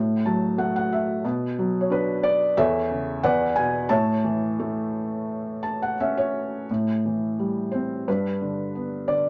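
A felt-muted upright piano opens the recording, its soft, muffled tone sitting up front and close enough that the noise of the action can be heard beneath the notes. This is lyrical solo classical piano in A major, cool and bittersweet in mood, moving at 89 BPM in 4/4 with a rubato feel that lets the pulse breathe. The harmony starts on F#m/A and passes through Bm, A/E and E7 to settle on A at 3.9 seconds, with felt-piano fills at the very start and again just before the music turns. At 6.7 seconds a second section begins on Am7 before reaching G. The piano ranges from E2 up to A5, and its mellow, intimate timbre, thinned by the felt, is wrapped in a wet but short reverb from a small room. This 9.3-second passage is cut from a longer piece.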